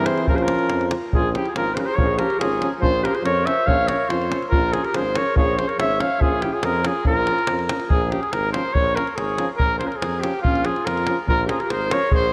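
A clear, distant flugelhorn carries the melody with light vibrato and a touch of delay from the very start of this restless, bittersweet Balkan brass band piece at 142 BPM in 2/4, shadowed by a mellow clarinet second line that drops out at 7.6 seconds and returns at 10.5 seconds, while a roomy euphonium and a soft-attack French horn hold the accompaniment in the background, a warm tuba anchors the bass, and a tight, dry davul drives the percussion over chords alternating between Bbm and Db, the whole mix steeped in a lush, dreamy hall reverb.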